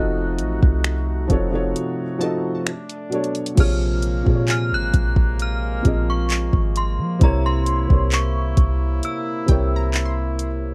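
A ringing, inharmonic FM synth chime carries the melody until 9.9 s, warbling through ensemble chorus and phaser over a felt-muted upright piano whose intimate accompaniment carries audible action noise. This slow contemporary R&B excerpt at 66 BPM feels sensual and longing. A deep, round 808-style bass and a smooth drum kit of soft kick, hi-hat, finger snaps, handclaps and crash cymbal sit up front, with the drums entering at 0.4 s; behind them, mellow, distant brass chords pump under sidechain, and a faint glassy wavetable pluck shimmers with chorus and tape echo. The dark, dry production moves from F7b9b13 through a break at 1.8 s into Bbm9 and C7b9.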